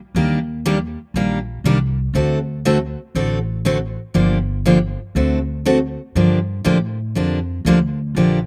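Swinging at 120 BPM in 4/4, this bittersweet, virtuosic excerpt of acoustic string swing sits in G minor and moves through Ebmaj7, D7 and Gm7 before settling on a Gm9 at 6.2 seconds. A bright, full-bodied picked steel-string acoustic guitar carries the accompaniment up front, while a pizzicato upright bass with woody, thumpy gut strings supports it lower in the mix. The sound is dry and open-air, with almost nothing of a room around the two instruments.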